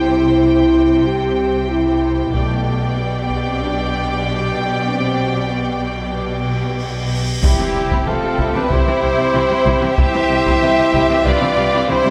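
Lush bowed violins carry the melody and a second line over background violas, mellow French horn chords, cellos and woody double basses in this triumphant, adventurous orchestral film cue at 94 BPM in C major, with a brief burst of hard-stick taiko at 2.3 seconds and a huge, bright cymbal swell from 6.4 seconds that lands as an impact at 7.4 seconds, where the taiko returns and a pure, tongued flute, a very quiet string section holding chords and dark trumpet stabs in the background join, all heard in a moderate scoring-stage reverb.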